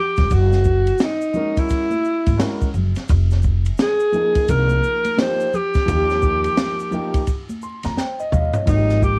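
This relaxed jazz-hop excerpt from a longer hip hop piece moves in a lazy, swung 4/4 over a Gb9, Fm7, Ebadd9 and Ab5 progression. A breathy alto saxophone carries the melody up front from the opening, mellow and jazz-styled with vibrato and scooped notes, and its tone is distant and roomy, softened by cassette tape. Beneath it, a woody pizzicato upright bass with steel strings and an open acoustic jazz kit, its punchy kick and high-tuned snare also tinted by cassette tape, sit close in the mix. Bright, dry tube shaker and hard-handed congas stay in the background, and a dark, smooth grand piano with a vintage character and long sustain joins at 1.3 seconds. The piano takes a fill at 7.3 seconds and the drums join in with one of their own at 8.0 seconds, all framed by light reverb, vinyl crackle and the cosy haze of a home cassette recording.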